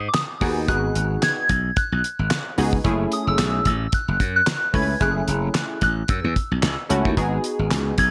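Growly, punchy slap bass sits up front in this short cut of early-eighties boogie funk at 111 BPM in F# dorian, the groove's 16ths carrying a light swing under a funky, late-night mood as the harmony moves from G#m7 to F#m7 and back. A damped 70s drum kit with a fat snare, tight kick and handclaps keeps a dark, dry pulse, while a detuned sawtooth polysynth comp with a filter sweep and chorus fills the middle from 0.4 seconds. High above, a soft FM synth bell plays a gentle, pure melody coloured by chorus, phaser and slapback echo, and the whole piece sits in a light small-room reverb.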